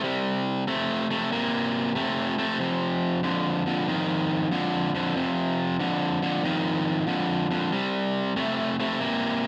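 A cranked stack electric guitar carries this short blues excerpt alone, its picked tone overdriven and up front, with a slapback echo trailing each phrase. The mood is laid-back yet rollicking, set at 94 BPM in 4/4 with a triplet swing on the eighth notes. The guitar stays in a low register, ranging from F2 to Bb3, and moves through power-chord shapes on C5, then F5 at 2.6 seconds, returning to C5 at 7.7 seconds. A moderate studio reverb gives the sound a sense of room around its warm, gritty voice. Cut from a longer piece, the passage runs about 9.5 seconds as a single section.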